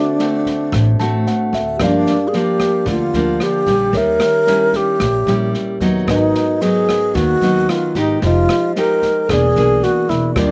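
Breezy and sophisticated, this bossa nova excerpt sets an airy, up-front wooden-headed alto flute melody with vibrato and slapback echo over fingerpicked classical nylon-string guitar with fresh-string squeak and a clean tine electric piano that adds a fill from 0.7 to 1.8 s. A dark open jazz drum kit with boomy kick, rim click and medium-tuned snare enters at 0.2 s, and a woody pizzicato upright bass joins at 0.7 s, captured in a dry outdoor recording with a dulled top end.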